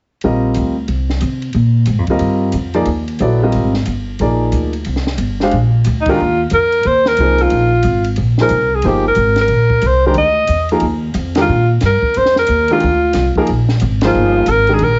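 Heard through a heavily compressed, radio-like sound with its highs cut off above 7.8 kHz and a light reverb, this excerpt of swinging modal jazz feels spiritual and open. A clear, vintage-toned upright piano sets out the accompaniment from the start, opening on a Bb13sus4 chord, alongside a woody, thumpy pizzicato upright bass with steel strings that sits up front. A compact cocktail drum kit plays hi-hat, ride, kick and snare further back in the mix, with a dark, rolled-off small-room sound, a punchy kick and a high-tuned snare. At 6.0 s, shortly after the second section begins, a band accent lands as an alto saxophone enters on the melody, bathed in plate reverb and played jazz-style with subtone, light vibrato and scooped notes. Further band accents land at 11.3 and 14.0 s, and the saxophone carries its solo line through to the end.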